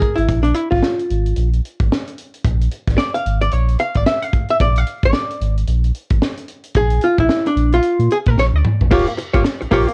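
Energetic and gritty, this funk excerpt at 111 BPM swings its 16ths over a Bb7 vamp in Bb mixolydian, where a dark, clean, compressed hollow-body archtop guitar takes a picked solo from the start until 8.9 s, backed by a deep, sine-toned sub bass with octave entering at 0.2 s and a tight, high-tuned acoustic drum kit in a small room that plays a fill at 8.4 s before the harmony moves to Eb9, all with the character of a cassette home recording, the guitar also carrying a plate reverb.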